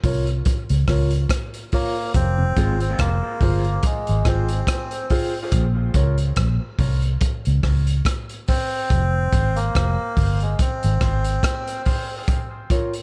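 A short stretch of hypnotic, deep dub reggae in F minor opens on a break, with a crunchy breakbeat kit of tight kick, hi-hat and rim click sitting up front, gritty and saturated with a rolled-off top, under a dark muted electric bass that is round, foam-muted and amped. Dark, mellow grand piano stabs with long sustain float behind them, high-pass filtered and trailed by dub echo, at a slow 71 BPM with a lightly swung sixteenth feel. A reedy, breathy melodica with a nasal, plastic-case tone enters with the melody at 1.7 seconds, its low line also thrown into dub echo. A clean tonewheel organ with key click and slow rotary speaker touches in briefly at 2.4 seconds in the background, and a slightly broken-up, picked electric guitar flickers at 2.6 seconds, soaked in spring reverb and echo. The harmony sways between Bb minor and F minor as a filter sweep runs through most of the passage, leaving a dry room but an echo-heavy mix that feels cut from a longer piece.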